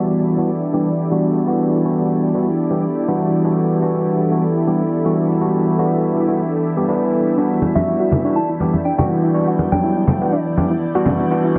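The overdriven tine electric piano stands out most, its barky, gritty stabs pushed up front through a combo amp with analog chorus, a low-pass filter and analog delay. This is a moody deep house groove at 122 BPM in 4/4 with a light swing, sitting on a single Em9 chord in E minor. Beneath it, a smooth sawtooth analog pad holds sustained chords in the background under a filter sweep, joined by a shimmering vintage string machine on violins and a reedy chamber string section with light vibrato and gut-string tone. At 7.4 seconds a soft, dark pluck begins arpeggios, soon followed by ringing, low-tuned congas played with soft hands up front at 7.6 seconds. A round, keys-like FM lead then adds a short, bright melody at 7.8 seconds. A moderate plate reverb and a dense, heavily limited master finish this cut from a longer piece.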